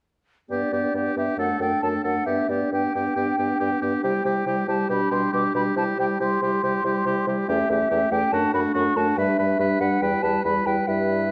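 At 0.5 seconds the whole wind quintet enters together in a quick, graceful and cheerful classical-period movement in G major, moving at 139 BPM in 4/4 with a rubato feel. A hollow, airy silver flute carries the melody with vibrato, a clear, close-miked oboe sings the second line, and a mellow French horn and distant, roomy clarinet fill in the accompaniment above a bassoon bass with a smooth top. The excerpt sits in a wet recital hall reverb and comes through worn, warbling old cassette tape with drifting pitch.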